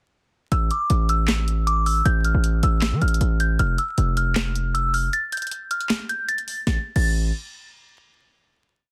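A punchy, heavy 808-style bass sits up front in this menacing hip hop and trap piece, its sine tone carrying a noise layer and a fast attack as long sub-bass notes decay and slide in pitch between F1 and E3. Set at 156 BPM in 4/4 with a half-time feel, the short track opens at 0.5 seconds with an A5 chord under the hook, and the harmony falls away at 3.6 seconds. Above it, a glassy FM synth bell with a vintage, warbling character repeats a looping melody between D6 and A6 like a sampled loop, treated with chorus and a low-pass filter. The electronic trap kit, re-recorded in a small room, lays down a half-time beat of sharp snare layered with handclaps, bright hi-hats with fast rolls, and crash cymbal. A break arrives at 5.1 seconds before the hook gives way to a final note, all within a dry, dense, heavily limited modern master dusted with vinyl crackle.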